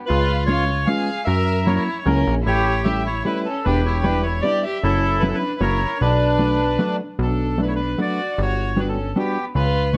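Whirling and nostalgic, this musette waltz in B minor turns at 152 BPM in a straight 3/4, heard as a short cut from a longer piece. A reedy, vintage bandoneon carries the melody up front, its band-limited tone ranging from D4 to E#5. Beneath it, a single bowed violin plays a smooth, even second line with rich vibrato. A punchy, funky analog bass, built from sawtooth and square waves with ring modulation and a fast-attack filter pluck that decays, sits prominently in the low register. A dark, clean, compressed hollow-body electric guitar joins at 0.5 seconds with fingered accompaniment, moving through chords such as C#7, F#7, Em7 and Bm7 before settling on Gmaj7 at 8.4 seconds. Close, detailed microphones and light reverb keep the sound intimate as the opening phrase repeats from 7.2 seconds.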